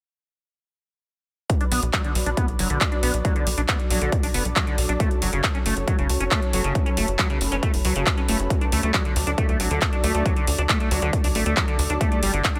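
Light reverb surrounds this uplifting trance excerpt, where the drums sit up front with the punchy, layered character of a kit re-recorded in a small room. It moves in a straight 4/4 at 137 BPM in B minor, driving yet bittersweet, as the chords cycle through Bm, F#m, D and Gsus2. At 1.5 seconds the electronic kick enters together with a big-room dance kit of handclaps and metallic hats, while a thick, detuned unison pad holds sustained chords with a slow attack, chorus, sidechain pumping and a filter sweep running throughout. A squelchy, resonant acid bass spins arpeggios in the middle register, coated in lush chorus and trailing dub echo, and it also pumps against the kick. Underneath, a tight sawtooth-and-square sequencer bass with a wave-folded edge and plucky filter adds a low, pumping pulse that keeps the section pushing forward.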